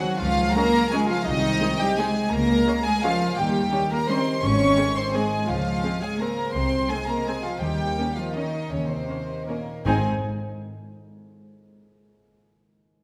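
In a rubato three-four, this elegant, sweeping orchestral ballroom waltz fragment sets a pure, floating sul tasto violin melody up front over a second violin line, bright, ringing harp arpeggios, warm, soft-attack cello and double bass bass lines, and a rich, intimate viola accompaniment in the background, with close, dry calf-head timpani touching in at 4.4 seconds and returning from 7.6 seconds inside a wet scoring-stage reverb.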